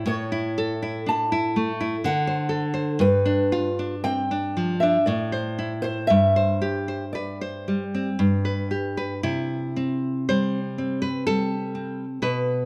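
A full-bodied nylon-string guitar sits up front, fingerpicking a deep, classical-sounding accompaniment from G2 to C5 throughout this fragment of a romantic guitar duo. Above it, a second, smaller-toned nylon-string guitar carries the fingerpicked melody between B4 and A5 until it drops out at 8.1 s, leaving the accompaniment to carry on alone to 12.7 s. The piece moves in a lyrical, warm 3/4 at roughly 55-64 BPM in C major, with a flexible rubato feel. The harmony passes through A, D7, G7, Am and Gsus4 before settling on G and then arriving on C as a new section opens at 9.2 s. Close, detailed microphones and light reverb give the two acoustic guitars a warm presence.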